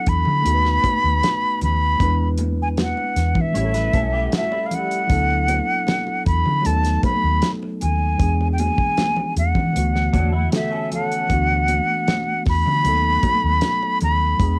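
An airy, unsteady concert flute with vibrato carries the melody up front in this lush 1970s-style soul piece at 77 BPM in D major, over a worn, slightly out-of-tune tine electric piano, a dark, round, foam-muted fingered bass, a dry, damped drum kit with a fat snare and tight kick, and ringing high-tuned congas in the background, while a slightly broken-up, chorused electric guitar through a small old amp adds brief picked riffs at 3.5 and 10.1 seconds, all with the cassette character and light reverb of a warm home recording.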